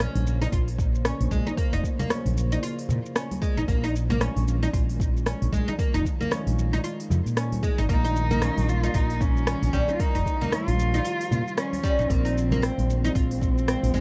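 Hypnotic and earthy, this organic downtempo excerpt moves at 114 BPM in 4/4 with a swung sixteenth-note feel, sitting in Bb dorian. An oud plays bright, double-stringed, plectrum-plucked arpeggios through tape echo, while a growly, round fretless electric bass sits up front, pumping with the sidechain. A deep house kit supplies smooth hi-hats, rim clicks and shaker, joined by very quiet soft-handed congas in a small room and a deep, layered electronic kick from 0.5 seconds. Beneath them, a warbling, lo-fi pad with a slow attack holds sustained chords in the background, colored by chorus, its own reverb and sidechain pumping, as the harmony moves from Bbmadd9 through Dbadd9/Bb and Ebadd9/Bb to Fm7/Bb. At 7.9 seconds a dark, distant bowed cello with vibrato enters up front with a woody melody through tape echo, and the dry, warm production keeps the fragment intimate.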